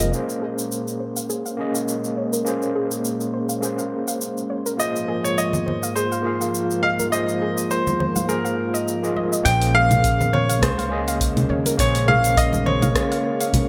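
A barky, gritty tine electric piano sits up front in this relaxed, wistful sunset chillout excerpt, its chords pulsing with fast tremolo, softened by a low-pass filter and trailed by digital delay. A lush, warbling unison pad holds sustained chords beneath it, thickened by chorus. A soft, round pluck plays arpeggios in the background with chorus and delay, while a filter sweep moves across it until 9.5 seconds. A brilliant grand piano takes the melody from 4.8 seconds, intimate enough that its action noise is audible. A deep house kit with dark hats, rim clicks and shaker carries a lightly swung groove under gated reverb, and close, dry congas ring in from 5.5 seconds. At 9.5 seconds a woody pizzicato upright bass and a deep, tape-warm electronic kick join, all set in a plate reverb with bright 1980s-style digital production.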